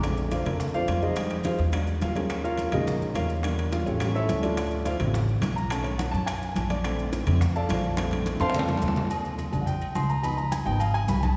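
A concert grand piano takes the solo across the whole clip, sitting up front with a warm tone and a deep bass, and it gives this sunny, sophisticated Afro-Cuban jazz its lead at a brisk 212 BPM in straight 4/4. The harmony moves through rich chords in Bb major, from Bbmaj9 through Ebm11 and A7b13 before returning to Bbmaj9 and then shifting to Ebmaj7 and Db9. Beneath it, a woody pizzicato upright bass with steel strings sits up front and anchors the low end. The percussion is layered: thick-skinned congas in the background, ringing timbales and agogo bells with a metal shell, grainy close maracas, and round, low-tuned bongos that stay very quiet. A drum fill arrives at 8.0 seconds, and the bongos drop out at 9.1 seconds as the section begins again. A lush church reverb with a long 3.1-second tail gives the short cut from a longer piece the spacious sound of a large hall.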